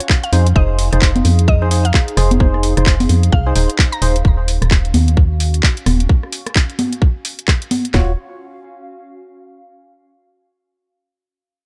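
Late-night and skippy, this dark, dry two-step UK garage excerpt moves at 130 BPM in Eb dorian with a swung 16th feel, driven up front by a tight kick and cracking snare, warm hi-hats with congas, handclaps and rim clicks, and a hollow, percussive, organ-like FM bass, while a woody mallet-like pluck with chorus and delay sits in the background, sine-and-noise organ stabs with analog chorus and delay punctuate the drop, and a warbling, nostalgic lo-fi pad with sidechain pumping carries the fade-out from 4.2 to 7.9 seconds.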